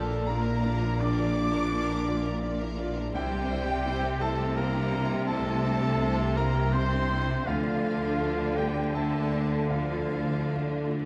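An up-front double bass section, rich and smooth, anchors this tender, hopeful cinematic film cue, joined on the bass line by a bright, focused cello section with lush vibrato. In a rubato 3/4 at 83 BPM, the harmony rests on Bb before moving to C at 3.1 seconds and Dm at 7.5 seconds. A clear violin section carries the melody from the background, while a classical-style solo oboe, a very quiet, pure and hollow flute section, and a second violin section with soft attack and an expressive, smooth top add second lines. Underneath, a mellow baby grand piano with long sustain and a distant viola section gliding with portamento fill out the accompaniment, a roomy French horn section holds sustained chords in the background, and a very quiet concert harp rings out fingerpicked arpeggios. Scoring-stage reverb and vinyl crackle give this excerpt a dark, warm, wet production.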